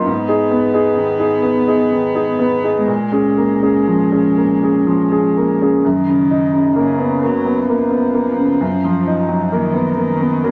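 Hopeful and tender, this neoclassical excerpt for piano and strings drifts in a rubato 3/4 at 60-67 BPM in F# major, tuned to A4 = 443 Hz, where a clear, open grand piano with long sustain sits up front as accompaniment while a single close, intimate cello plays a second line with light vibrato, a soft attack and an airy sul tasto bow, all in a moderate studio reverb as the harmony moves from G#m and A#m7 to F#6 at 5.8 seconds before settling on D#madd9/F#.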